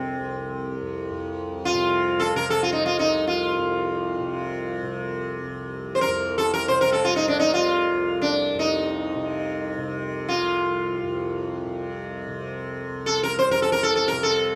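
From the first moment, a round, buzzing sitar, up front and ringing with sympathetic strings, spins a meditative, solemn Hindustani classical melody in raga Bageshri on C in free time, while a softly plucked, bright, shimmering tanpura drone sits lower in the mix beneath it, both carried by a moderate studio reverb in a rough home-demo sound on this passage cut from a longer piece.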